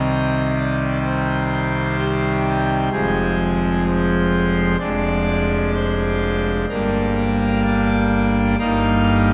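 A full pipe organ opens alone on a C minor chord, its mixtures ringing out brilliant and majestic from up front in a solemn, dark chorale of romantic voicing, spanning from deep pedal tones up into the treble. The slow, rubato phrasing moves through Fm at 2.9 seconds, a diminished chord, and Gm toward an Eb chord at 8.6 seconds. A long, wet cathedral reverb surrounds the organ in this short excerpt cut from a longer piece.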